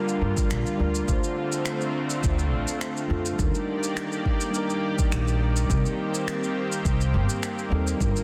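A woody, growly pizzicato upright bass anchors this relaxed, wistful sunset chillout excerpt at 104 BPM with a gentle 16th-note swing, alongside a deep, tape-warmed electronic kick, layered electronic shaker and finger snaps with a softly clipped snare, a mellow tine electric piano through tape echo and shimmer reverb, and a thick, warbling, detuned sawtooth pad with chorus and a slow attack, moving through Gm7, Dm7, Ebmaj7 and Cm7 inside a lush hall with a dense, heavily limited modern finish.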